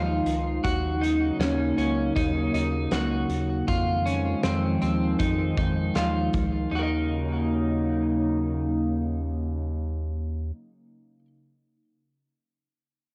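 A warbling, nostalgic tape-like pad holds up-front sustained chords in this melancholic, ethereal dream pop excerpt in Eb minor at 79 BPM, moving between Fm7 and Ebm7 beneath a dark, clean picked electric guitar playing arpeggios through analog chorus and delay. A round, deep analog bass anchors the low end, while a loose indie drum kit with a fat snare and punchy kick plays from 0.3 to 6.5 seconds before dropping out. The home cassette recording carries moderate spring reverb and small-room ambience, and the guitar rings on alone until 11.3 seconds.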